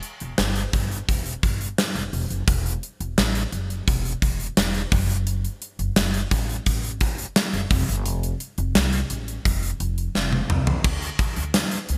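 A straight 4/4 groove drives this uplifting, nostalgic stretch of 1980s-style pop, cut from a longer piece. The gated drum kit sits up front with a punchy kick, medium-tuned snare, hi-hat, tambourine, toms, crash and bright cymbals in an airy stone room, while a woody, dark pizzicato upright bass with steel strings enters at 0.2 s. A drum fill at 10.2 s leads into a new section at 10.8 s, all framed by bright digital production and light reverb.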